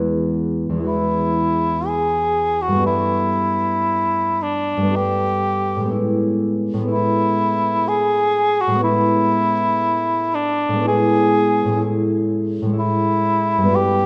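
A moderate scoring-stage reverb with a 2.0-second decay gives this short impressionist classical excerpt a spacious halo. It is a duo in 3/4 with a rubato feel, luminous and pastoral in mood. The concert harp opens at 0.0 seconds with an acoustic, thumb-plucked tone that is bright and ringing as it sets out the accompaniment up front. The mellow cor anglais enters at 0.9 seconds to carry the solo melody in a classical style, present and close, its line colored by a light vibrato. Beneath it the harmony drifts through added-ninth and major-ninth colors, moving from Eadd9 to Gadd9 and Amaj9 before settling on Amaj7 at 11.8 seconds.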